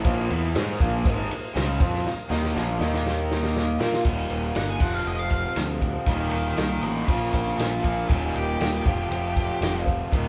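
A straight 4/4 classic rock groove at 119 BPM drives this confident excerpt, with a punchy, up-front vintage drum kit, round picked electric bass, and two overdriven rhythm guitars (one hollow-bodied, one lo-fi and raw) pounding out the riff in a live-room sound with moderate large studio reverb, while a very quiet bright tonewheel organ with slow rotary shimmer holds chords until 3.8 s, a drum fill leads into an Eb lydian passage at 4.1 s where a faint, shimmering twelve-string acoustic joins, and a dark octave-fuzz lead guitar solos from 4.6 s.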